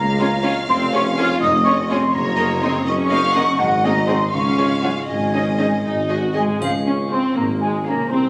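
Playful and magical, this whimsical cinematic film cue in 6/8 at 81 BPM in Db major sets a close, expressive violin section with vibrato and portamento on the melody against a pure, distant flute group on a high second line, a soft-edged background violin section, smooth viola accompaniment, and ringing, fingerpicked harp arpeggios, over a lush bass of focused cello and double bass sections and a present, soft-attacked tuba, while a bright triangle enters at 6.6 s, the sound sitting in a wet concert-hall reverb as heard on a phone in the room.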